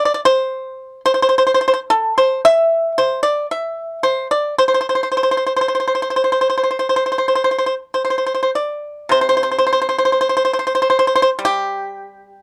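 A close, dry studio sound with a 1970s character frames this brief, serene cut from a longer piece of traditional Chinese solo plucked-string music. A lone acoustic pipa, played with fingerpicks, sits up front with a bright, percussive tone, moving freely in an elegant rubato. Around 9.1 seconds the music turns to a new section, which carries it to the close at 12.4 seconds.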